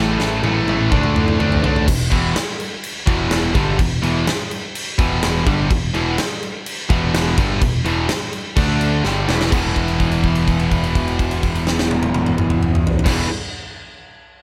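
A straight, driving 4/4 at 126 BPM in E minor anchors this heavy hard rock passage, cut from a longer piece, with a huge, punchy arena drum kit up front whose bright cymbals, medium-tuned snare and toms roll through fills at the start and again at 9.0 seconds. Two bright, overdriven electric guitars (one double-tracked) and an overdriven semi-hollow guitar with a hollow-body warmth play the riff from the background, over a growly, picked electric bass, as the harmony moves from A5 and D5 power chords into E minor. At 9.5 seconds the band lands on an E5 chord held to the close, all set in light reverb and small room ambience.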